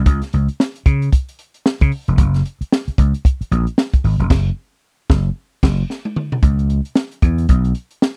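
Funk with a cool, driving swung-sixteenth feel, this dry, close 1970s-style recording puts a growly, amped vintage slap bass and an acoustic compact cocktail drum kit with dark cymbals, a high-tuned snare and a punchy kick up front, hitting a band accent at 4.3 seconds and a drum fill at 5.9 seconds before the bass drops out at 7.7 seconds.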